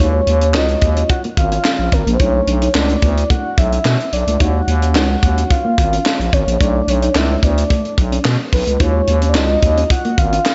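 A growling, thick FM bass sits up front beside a tight funk drum kit with a high-tuned snare, kick, hi-hat and handclaps in this funky, slick early-eighties boogie funk excerpt at 109 BPM, where a soft, round octave-layered synth lead with chorus, tremolo and slapback echo carries the melody over a mellow FM electric piano in the background, a very quiet, clean electric guitar riff and alternating Ebm11 and Bm11 chords, set in a lush hall reverb that gives a big arena sound.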